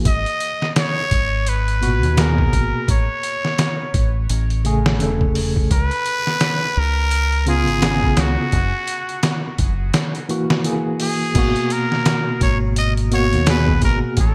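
A worn, slightly out-of-tune tine electric piano with tremolo, overdrive and tape echo opens this melancholic, cinematic trip hop excerpt at 85 BPM in G# minor, joined at once by a nasal, raspy straight-muted trumpet melody with light vibrato and dub echo, a dark, round fingered dub bass, and an up-front, gritty, pitched-down sampler drum kit with a thumpy kick and gated reverb, swinging over G#m9, Amaj7, C#7 and F#7 with a bright 1980s-style digital sheen.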